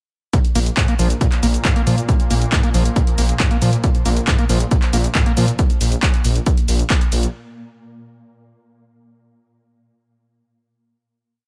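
From 0.3 seconds, a punchy, layered four-on-the-floor kick and a roomy, overdriven analog drum machine playing claps, shaker and open and closed hats with sidechain pumping together drive this intense, industrial peak-time techno piece at 137 BPM, the whole piece a single drop over a Bb5 chord. A thick, menacing detuned saw bass holds the off-beats up front, while a squelchy, resonant acid line of 8 steps sits in the background, coloured by distortion, cassette tape grit and digital delay. From 1.0 seconds a very quiet, swarming drone adds evolving, granular tension.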